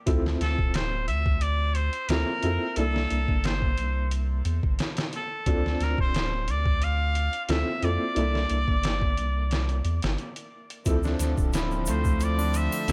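A clear, woody upright piano with tremolo and tape echo opens this dark, hypnotic trip hop excerpt in D minor at 89 BPM, joined at once by a deep, round dub sub bass and a gritty, pitched-down sampler-style drum kit with a thumpy kick, both sitting up front, while a nasal, straight-muted trumpet carries a jazz-style solo melody through tape echo. The harmony sways between Dm7 and C13 with a light swing on the sixteenths, in a dry mix with little reverb. At 10.9 seconds, rich, bowed chamber strings with 12-bit sampler grit enter with sustained chords alongside a bright egg shaker and triangle, and at 11.0 seconds a felt-muted upright piano adds intimate arpeggios with audible action noise.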